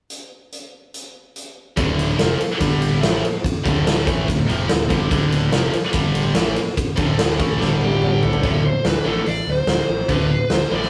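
Menacing and heavy, this hard rock excerpt from a longer piece drives along at 144 BPM in a straight 4/4, rooted in D dorian. A huge arena drum kit opens alone, its punchy kick and medium-tuned snare sitting up front in a natural big-room sound with hi-hat, ride cymbal and toms. At 1.8 seconds a bright, double-tracked high-gain guitar riff crashes in with heavy distortion, joined by a round, fuzz-soaked fingered bass that moves through Dm and G5 changes. A drum fill begins at 7.6 seconds, and at 7.8 seconds, during that fill, a dark, smooth lead guitar enters with overdrive and tape echo, singing a melody between G4 and D5 over the G5 and D5 power chords as the final section arrives at 8.4 seconds. The whole thing has the rough, tube-saturated feel of a rehearsal-room recording, set in a moderate stone room reverb.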